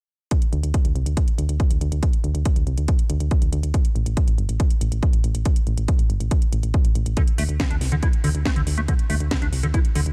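Set in a digital ambience with a tape-warm, produced sheen, this short excerpt of uplifting trance feels soaring and driving at 140 BPM in a straight 4/4. A punchy, layered electronic kick sits up front from 0.3 seconds, joined by a house drum kit whose cracking snare and metallic hi-hats carry a touch of studio reverb. Just after, a solid FM bass enters with a round, dark tone and fast, decaying notes, pumping against the kick through sidechain compression between G1 and D2. At 7.2 seconds a liquid acid bass arrives playing arpeggios from D3 to E4, its squelchy, resonant square-wave voice shaped by a filter sweep, phaser, subtle chorus, delay and the same sidechain pumping. The whole passage holds to a single section as the acid line threads above the low end.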